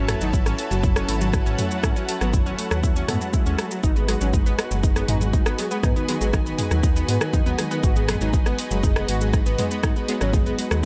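A straight 4/4 pulse at 120 BPM drives this cinematic, hypnotic melodic techno in G# phrygian, where a punchy, up-front electronic kick and a house kit of warm hats, rim click, shaker and toms anchor a deep, rumbling detuned saw bass, while round analog pluck arpeggios with delay, a lush unison pad, a smooth, expressive lead with dub echo and vibrato, and distant, woody symphonic strings all pump under sidechain, joined by a faint electronic swell at 3.1 s and very quiet brassy synth stabs from 4.1 s as F#m7 gives way to G#m7 in a dry mix.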